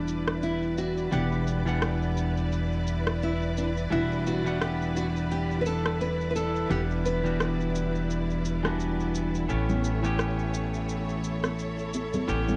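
A clean, twangy electric guitar sits up front in this relaxed, smooth sunset chillout excerpt at 86 BPM, playing compressed, picked accompaniment in E dorian with a swung sixteenth feel, while a small, fingerpicked nylon-string guitar carries the melody through tape echo until 9.1 s. A woody pizzicato upright bass anchors the low end, and a lush, bowed symphonic string section with vibrato and plate reverb sustains chords over Em7, moving to A7 at 9.5 s, as a layered electronic shaker and rim click, dulled by a low-pass filter, keep time. Bright, saturated congas join at 9.7 s, and the home cassette recording, heard in a modest booth ambience, lends a soft, rolled-off top.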